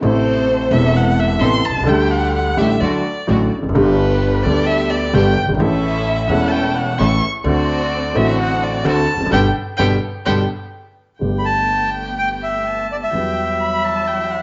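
A warm, expressive violin leads this elegant, playful tango excerpt, its bowed single voice full of vibrato and portamento, heard up front yet with a distant quality as it carries a solo from the opening until 11.2 seconds. Beneath it, a dark, mellow upright piano supplies smooth, woody, vintage-toned accompaniment, while a pizzicato upright bass with steel strings adds a growly low end. A chamber string section, bowed and smooth on top, punctuates the texture with stabs, and the band comes together for an accent between 9.3 and 11.2 seconds. At 11.4 seconds a reedy, airy bandoneon steps forward with the melody as the music moves into a new section. The tempo sits at 128 BPM in 4/4 with a rubato feel in G major, and a wet spring reverb with small room ambience gives the sound an intimate, slightly softened character.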